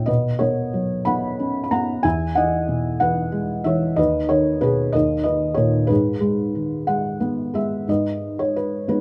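A felt-muted upright piano, soft and intimate with thick felt, short sustain and audible action noise, plays alone up front in this melancholic, dark classical excerpt: a lyrical solo in G# minor at 62 BPM in a rubato 6/8, tuned to A4 = 435 Hz, its close, detailed sound touched by light reverb as the harmony moves from Bsus2 through E to G# minor by 5.9 seconds before a new section begins at 7.9 seconds.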